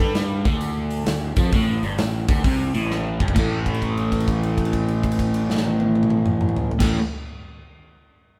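A swung 4/4 groove at 131 BPM drives this gritty, short cut from a longer blues rock and southern rock power-trio piece. A crunchy, double-tracked overdriven electric guitar sits up front with a bright, picked riff through a phaser, while the harmony moves from D5 to Gsus24 before landing on A5 at 3.4 seconds, where a note is held until 6.8 seconds. Underneath, a fingered electric bass growls with fuzz and overdrive, its punchy, direct-and-amped tone anchoring the low end throughout. A big acoustic rock kit, also up front, brings a punchy kick, a medium-tuned snare, hi-hat, crash and toms with bright cymbals, and a drum fill between 2.9 and 3.4 seconds pushes the music into its second section. The trio sounds like a band playing live together in a stone room, with a moderate reverb adding a sense of space.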